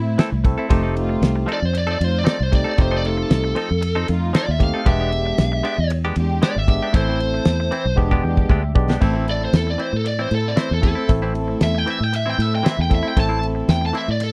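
A dark, woody string section and a round, foam-muted fingered bass open this brooding soul blues excerpt, with the strings holding lush, bowed chords in the background while the bass sits up front. A damped 1970s drum kit with a fat snare and tight kick joins almost at once, alongside a twangy, scooped clean guitar recorded direct that plays compressed stabs and a barky tine electric piano filling out the accompaniment. At 1.5 seconds a lead guitar through a small cranked amp takes the melody, its overdriven, picked tone carrying a slapback echo as it solos over the changes. The harmony moves from A minor through a dominant seventh chord to a tense E7#9, and at 8.0 seconds the drums and electric piano each play a fill before the progression returns to A minor at 9.0 seconds. The sound is dry and close in the manner of a 1970s studio, with tape saturation and little room around the instruments, giving the soulful groove an intimate feel.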